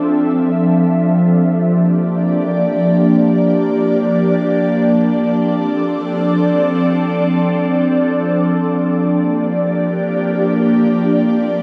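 An ethereal, airy pad opens this brief hip hop fragment alone, sustaining in free time and drifting through a Dm7 to Gm7 progression. Its detuned unison sawtooth and triangle tones arrive with a slow attack and linger on a long release, colored by ensemble chorus, phaser, delay and its own built-in reverb. The pad sits up front, spanning F3 to E5, while a huge ambient reverb with a 7.5-second tail soaks the whole mix in a dreamy wash. The harmony returns to Dm7 at 4.7 seconds before a new section begins on Gm7 at 8.5 seconds. Tuned slightly flat at A4 = 439 Hz, this spacious clip is cut from a longer piece and ends at 11.6 seconds.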